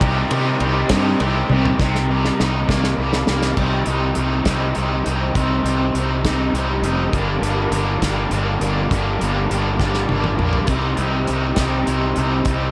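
The sound is echo-heavy, with light studio reverb around a small-room drum kit, giving this moody, bittersweet indie rock cut from a longer piece a slightly hazy depth. It moves in 6/8 with a straight feel. A growly, fuzzed-out fingered electric bass sits up front, and a bright, biting overdriven guitar plays a picked riff through a harmonic tremolo. A raw, lo-fi garage guitar plays a second riff, coloured by overdrive, ensemble chorus and dub echo. The loose acoustic kit sounds mid-forward, with dark cymbals, a punchy kick and a medium-tuned snare; dub echo trails its hits, and it plays several fills, including one at around 9.8 seconds. Beneath it all, a very quiet vintage string machine voiced as cellos holds mellow, soft-attack sawtooth chords with a sub octave, moving from Cm7 to Gm7 at 7.1 seconds before settling back on Cm7.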